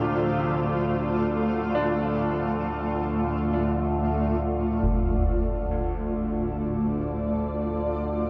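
In free time, this short cut from a longer dark ambient drone piece sits on a D minor chord and feels cavernous and dark. Up front, an overtone-sweeping drone built from sawtooth and sine tones holds the low register from D2 to D3, its wave-folded, resonant overtones shifting under chorus, phaser and its own reverb. Beside it, a granular cloud pad sustains chords from A3 to D5, cloudy, blurred and bright, with detuned unison voices that slowly evolve. Farther back, a polished grand piano plays brilliant arpeggios between D2 and D4, its short-sustaining notes echoed by delay. At 4.8 s, a close, dry concert bass drum enters under a low-pass filter and falls silent by 5.1 s. A huge reverb with a 9.3 s decay drenches the whole recording, and worn cassette tape adds a warbling pitch drift throughout.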